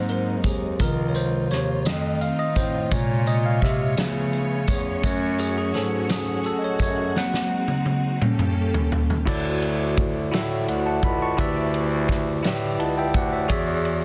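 A bell-like tine electric piano leads this short cut from a longer slow gospel piece, taking a bright, clean solo up front through the first 9.3 seconds at 57 beats per minute in a straight 6/8, with a jubilant yet reverent mood. Beneath it, a bass clarinet with a vintage, classical tone carries the bass line throughout, while a studio string section adds soft-attacked, bowed sustained chords with vibrato and a smooth top until 9.3 seconds. A natural country drum kit sits up front with a fat snare and punchy kick, using crash, ride, hi-hat and toms, and a jingly tambourine sounds distant in the background from 0.4 to 7.1 seconds. The harmony moves through rich seventh chords in Db major, and a drum fill from 7.2 seconds leads into a lift to D major at 9.3 seconds, opening on a Dmaj9 and closing on an E13. Light reverb and a small-room ambience surround the parts, and the master is dense and heavily limited.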